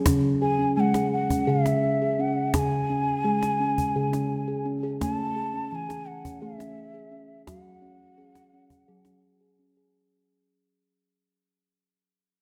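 Set in an uneven 7/8 with a straight feel, this meditative world piece for tuned percussion moves in a hypnotic, circling pulse. A steel tongue drum carries the harmony in arpeggios from the opening second, its round, pure tone struck with firm rubber mallets and sitting bright and up front. A cajon enters at 0.1 seconds, snappy and close, its snares rattling under hard hands in a dry, acoustic sound. At 0.4 seconds a breathy, hollow bansuri takes the melody, a bamboo voice with vibrato and tongued notes, carried by a delay that trails each phrase. The whole cut, taken from a longer piece, unfolds in one spacious concert hall and fades out gradually across its full length.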